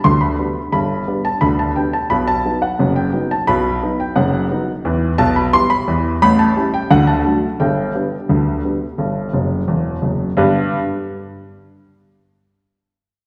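A straight 2/4 pulse drives this cheerful, jaunty ragtime excerpt, played by a solo upright piano that sits up front with a worn, woody, slightly detuned tone spanning from deep bass to bright treble. The harmony moves from G through B and E minor to A7 and D before settling back on G, and the piano slips in a short fill from 9.3 to 10.4 seconds just before the piece turns to a new section. A generous, wet reverb from a recital hall surrounds the instrument, giving it the natural resonance of a church or concert space.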